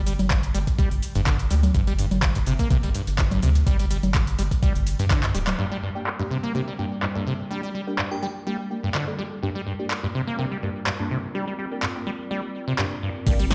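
Driving, hypnotic acid house cut from a longer piece, where a squelchy, resonant sawtooth acid riff with subtle chorus and digital delay pumps against a round, deep analog bass, a thumpy electronic kick and an analog drum machine of punchy snare, metallic hats, congas, shaker, handclaps and crash, until a drum fill and band accent near 5.5 seconds give way to a stretch where the drums are filter-swept and the bass and kick drop out, a nasal band-passed chord stab with phaser joins, a warbly, nostalgic tape-like pad drifts in the background, and a brief crystalline FM bell chimes with tape echo at 8.1 seconds, all set in a big, bare-room studio reverb.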